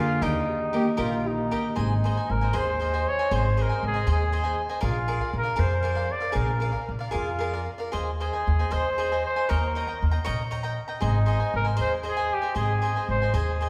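A vintage-toned solo trumpet carries the festive, proud melody of this mariachi excerpt in Ab major, its classical phrasing trailed by tape echo, while a mellow, close-miked second trumpet with light vibrato adds a brief line between 0.8 and 1.8 seconds. Underneath, a bright, crisp picked cavaquinho and an up-front, woody pizzicato upright bass on steel strings hold a rubato 6/8 pulse at 78 BPM, and a thumb-plucked Celtic harp rings out in arpeggios until 4.0 seconds. The harmony opens on Eb, settles on Ab, then moves through Bb7 and Eb7 and back to Ab, all heard from further back in a wet recital hall.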